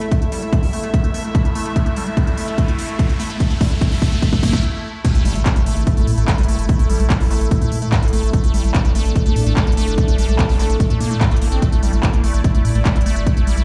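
Booming through a big sound system in a bare, heavily reverberant room, this alien, psychedelic trance excerpt at 146 BPM in 4/4 opens with a build-up where a squelchy, resonant liquid acid bass riff with phaser and delay rides a filter sweep, a bubbling stepped-filter texture holds sustained chords through chorus, floating, distant bowed strings hang far back, an overdriven, up-front kick and a techno kit of crash, handclaps and smooth hats push a drum fill, and a background riser climbs from 0.6 s before a brief break and an impact at the drop at 5.0 s, where a deep, round analog bass enters at 5.1 s; throughout, the pads, strings and acid line pump against the kick.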